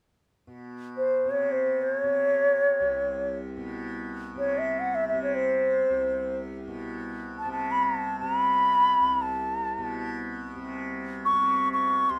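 Devotional and meditative, this excerpt of Indian classical music unfolds in free time, with a softly plucked tanpura setting down a bright, buzzing, shimmering drone from 0.5 seconds. At 1.0 seconds a bamboo bansuri enters up front, its pure, warm tone carrying the melody with vibrato and tongued articulation high above the low drone. Light reverb gives the pair a gentle sense of space.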